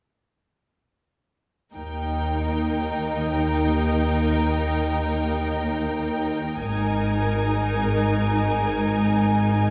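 Cinematic string writing in free time and Eb major, this heroic, soaring fragment of a longer piece opens at 1.7 s as a smooth violin section playing with vibrato carries the melody between G5 and Ab5, joined almost at once by a focused, lush second violin line holding Bb4. Beneath them, a dark, woody viola section sustains Eb4, an expressive cello section moves between Eb2 and Ab2, and a rich, distant double bass section anchors the low end from Ab1 to Eb2, with the harmony shifting from Eb to Absus2 at 6.6 s. The bowed ensemble sits in a wet scoring-stage reverb, heard from further back in the room.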